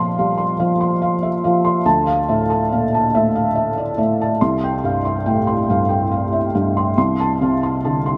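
A felt-muted upright piano plays alone from the first moment of this brief, intimate and reflective neoclassical minimalist fragment, its mellow, thick-felted tone sitting up front with audible action noise as it moves in a rubato 6/8 through Bbsus2, Dmadd9, Csus4 and F/C across a range of C2 to C6, while lush chorus and digital delay on the piano melt into a huge ambient reverb that soaks the dreamy mix.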